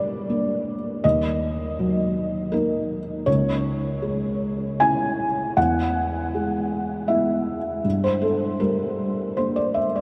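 In a loose rubato 3/4 at 79 BPM, this reflective, melancholic fragment of neoclassical minimalist piano, cut from a longer piece, features a lone felt-muted upright piano, dark and intimate with thick felt and audible action noise, sitting up front in a vast, echoing space whose huge reverb trails behind it as the harmony drifts from Gm through D#m, C#m and E back to Gm.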